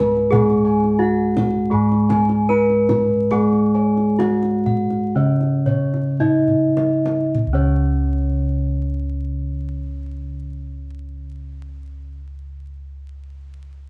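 A boxy, up-front bronze metallophone carries the melody in this serene, ceremonial Javanese gamelan fragment in C# slendro. The tempo gradually slows from about 91 to 50 BPM over the first 7.3 seconds. Beneath it, a lower metallophone plays the accompaniment, while higher metallophone and mellow bossed-gong arpeggios shimmer above. Round, beating bossed gongs with padded beaters hold the bass. A tight, vintage-sounding kendang plays a drum fill from 6.2 s, leading into a new section at 7.3 s, and drops out at 7.9 s. The whole ensemble plays live in a stone room with a short reverb, softly dusted with vinyl crackle.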